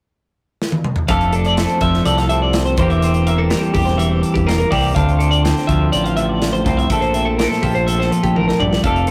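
This rough rehearsal-room recording carries tube saturation and light reverb, giving a bright, playful slice of math rock and midwest emo in F major at 124 BPM in a straight 4/4. A small-room acoustic drum kit opens with a fill at 0.6 seconds, its punchy kick and medium-tuned snare sitting alongside hi-hat and toms. At 1.1 seconds two clean, compressed twelve-string electric guitars arrive together: one plays a twangy, bright accompaniment, while the other picks warm, up-front arpeggios high above it. Underneath, a growling picked electric bass, heard direct and amped with overdrive, anchors the low end. The harmony moves through F6, C7/E, Dm7 and a lush Bbmaj9#11, and the drums add another fill at 8.4 seconds before this excerpt of a longer piece cuts off.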